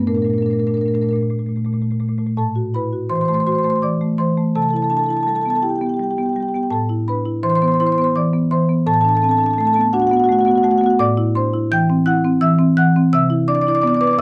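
Contemporary classical music for solo marimba, this reflective, hypnotic 14.2-second cut from a longer piece moves in a rubato 6/8 at 56 BPM in A dorian, with the up-front marimba played with medium mallets on padauk bars, sounding woody, dark and smooth across A2 to G6, set in light reverb as a new section begins at 2.4 s and harmonies drift from Bbmaj7 through Am6, Cmaj7 and Bm7/A to a closing Cmaj9.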